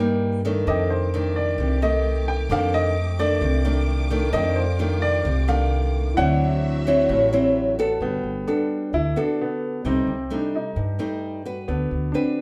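Bossa nova at 131 BPM in a relaxed, breezy mood, where a short-sustained baby grand carries the melody up front over fingerpicked nylon-string guitar and a woody, thumpy pizzicato upright bass, while a very quiet, mellow second grand piano and lush, vibrato-laden bowed strings fill in until both drop out at 8.0 s, as the chords settle into G major and the band plays live together in a wet stone room.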